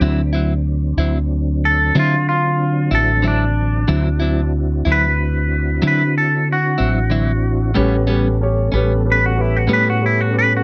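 This cut from a longer slow blues opens on a clean electric guitar, a mellow tonewheel organ and a fretless electric bass together. It moves in a laid-back 12/8 at 62 BPM in D mixolydian. The compressed, picked guitar sits up front and is featured throughout, its harmonic tremolo shimmering over a D9 chord. The organ stays soft and flute-like in the background, colored by chorus vibrato and a slow rotary speaker. The round, dark bass is amped and prominent beneath them. At 1.7 seconds a bright, twangy electric guitar enters with a soulful picked melody, and at 7.8 seconds a grand piano with long sustain joins as the harmony shifts to A9, shortly before the clean guitar stops at 9.9 seconds, all under a light reverb.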